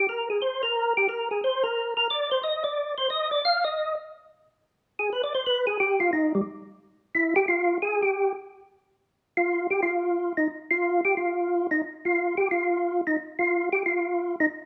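Jazz with a smoky, bluesy swing, this excerpt features a solo tonewheel organ, mellow and round with a clean, percussive attack from its third-harmonic percussion, sitting up front through a slow rotary speaker and chorus vibrato in a large studio room with moderate reverb, the feel of a band playing live together.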